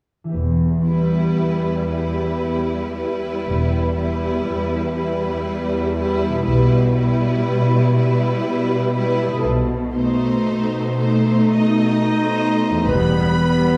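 Melancholic and elegiac, this slow romantic orchestral movement in rubato 3/4 has a clear, focused violin section carrying the melody over ringing, thumb-plucked harp arpeggios, a smooth second violin line, a distant viola section with expressive portamento, an up-front warm cello section and a lush double bass section, with a roomy, soft-attack clarinet joining on a second line at 11.6 seconds and very quiet timpani entering at 12.9 seconds, the orchestra heard from further back in a wet scoring-stage reverb.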